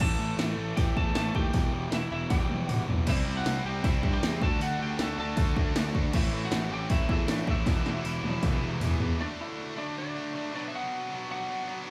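A live-in-one-room sound with light reverb carries this aggressive, urgent punk rock excerpt at 157 BPM in E minor, where a punchy, tape-warm analog drum machine sits up front beside a fuzzy, overdriven picked bass, a bright, tight distorted guitar riff, a second distorted guitar riff joining in the background at 3.1 seconds, a very quiet double-tracked raw garage guitar, and a twangy, slightly broken-up lead guitar melody with tape echo, before the drums and bass drop out at 9.1 seconds and the remaining guitars carry a half-time close.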